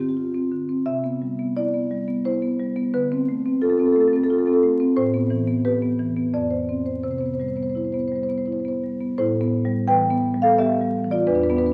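A solo marimba played with medium mallets opens this contemporary classical piece, its rosewood bars giving a woody, vintage tone that sits up front even as the instrument ranges from its low register up to the upper bars. The mood is playful and warm, moving in a three-beat metre with a straight feel. The harmony drifts through jazz-tinged colours, starting on a G7sus4 and settling onto Cmaj7, Dm7 and Am9 before a bare F5 leads back to Cmaj7. At 9.2 seconds a new section begins on Am9, carrying the music to the cut at 11.7 seconds, since this passage is taken from a longer work. The sound is band-limited and bathed in the lush reverb of a recital hall, heard from further back in the room, with a vinyl crackle adding to its aged character.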